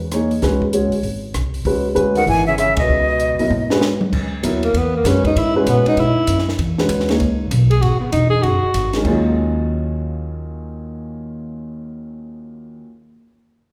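A whispered, breathy tenor saxophone with scooped notes takes the solo from 4.1 to 9.0 seconds in this intense, hypnotic modal jazz piece at 195 BPM with a swung feel, after a crisp, bright, chiffy flute joins it briefly at 2.2 seconds, over a woody pizzicato upright bass, a natural-sounding grand piano and a dry compact cocktail drum kit with dark cymbals, a high-tuned snare and a punchy kick, heard in a reverberant recital hall.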